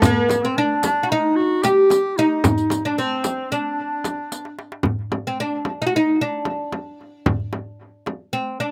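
Stately and warm, this Turkish makam ensemble piece in D makam hicaz moves in 9/8 at 224 eighth-note beats per minute, its woody, fretless oud leading up front with plectrum-plucked double strings. A clear clarinet carries a second line in jazz style, with light vibrato and scooped notes. Beneath them a crisp metal-shell darbuka, a deep, close frame drum played with hard hands, and a riq with bright jingles keep time, and a drum fill arrives at 4.3 s just before the riq stops at 4.4 s and the clarinet at 4.6 s, all set in a light outdoor reverb with a slapback echo on oud, clarinet, darbuka and riq.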